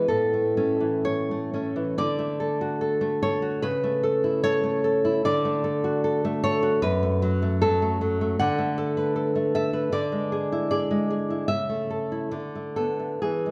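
In a loose, rubato two-beat pulse, a solo nylon-string classical guitar, dark in tone and fingerpicked up front with a touch of slapback echo, plays a sunny, tender romantic passage cut from a longer piece. It is set in the wet reverb of a scoring stage and moves from a brief opening into a longer second section at 2.0 seconds, wandering through chords like F#madd11 and Bm7/D and passing A/C# before ending on Bm7/D near the close.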